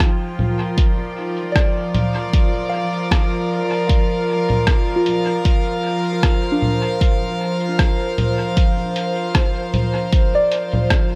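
Ambient dub at 77 BPM with a lightly swung 16th feel, meditative and hazy, where a distant, floating string section holds soft-attack bowed chords over a Bb/F harmony as a deep, overdriven electronic kick sits up front alongside a muffled, pitched-down sampler kit of congas, hi-hat and rim click steeped in dub echo, and from 1.5 seconds a mellow FM synth bell traces gentle arpeggios in the background through chorus, phaser and tape echo, all in a light-reverb, echo-heavy mix cut from a longer piece.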